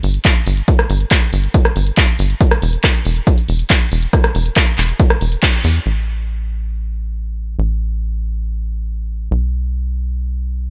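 A tight, saturated sawtooth sequencer bass pulses with sidechain pumping from the start of this euphoric, driving uplifting trance excerpt at 139 BPM, its filtered pluck sitting up front in the low register. An analog drum machine with crash cymbal, handclaps, hi-hat and rim click, its hats and cymbals darkened by low-pass filtering, also plays from the start and is joined at 0.2 seconds by a layered, punchy electronic kick that sits loudest in a dry, close mix. The band hits an accent at 5.4 seconds, and after the drums stop at 5.9 seconds the bass carries on alone until 10.7 seconds.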